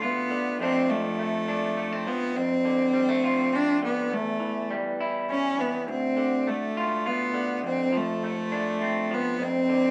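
A bowed cello with light vibrato carries a biting, intense melody up front while an electric guitar through a small old amp picks a twangy, slightly broken-up, lo-fi accompaniment from the start of this melancholic, intimate acoustic folk-pop ballad in D dorian, moving at 102 BPM in a straight 3/4 through chords of Dm, F6, Dm7/F and A7/E, all set in a large studio's moderate reverb.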